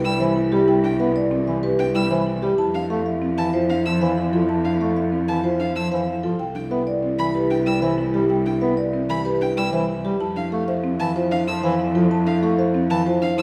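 Minimalist classical pattern music in a straight 6/4, propulsive and hypnotic, cut from a longer piece and resting on an alternation between Cmaj7 and Fmaj7 throughout its 13.4 seconds. A mellow, round marimba played with soft mallets carries the melody over a second marimba whose woody, buzzing bars spin arpeggios alongside a smooth violin high above, while a dark French horn holds a second line, a soft-attacked bass clarinet supplies accompaniment, and a rich, expressive cello with vibrato and portamento anchors the bass. All six parts play from start to finish, set in the wet reverb of a recital hall or church.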